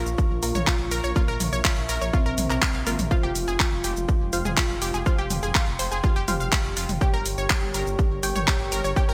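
A layered house kit of handclaps, hi-hat, shaker and toms wrapped in gated reverb enters at 0.1 s in this dramatic, melancholic melodic techno excerpt at 123 BPM in F harmonic minor, and from 0.2 s a punchy, up-front electronic kick drives it forward. Beneath them a menacing, saturated detuned saw bass evolves through a filter swell, while a lush unison pluck spins delayed arpeggios and a muted dub chord stab flickers through phaser and delay in the background. A deep, nasal analog pad holds chorused chords moving from Bbm to Fmadd9 to Gdim, and a round, octave-layered synth lead sings with chorus, tremolo, vibrato and vintage 12-bit grit, all pumping to the sidechain under a bright 1980s-style digital sheen.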